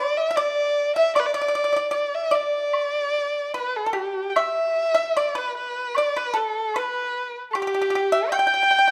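Set in a flexible, rubato two-beat metre, this short excerpt from a longer piece of Chinese traditional chamber music has a pastoral, graceful mood. A single bowed erhu carries the melody up front from the opening moment, its tone warm and expressive with soft attacks, vibrato, sliding portamento and a smooth top. Beside it, also up front, the pipa plays a second line in the same register, plucked with fingerpicks for a bright, dry and percussive sound. A woodblock joins in the background at 1.2 seconds and stops at 8.5 seconds, close and dry in character. The music falls into two short sections, the second beginning around 4.4 seconds, and a moderate recital-hall reverb gives the ensemble a natural sense of space.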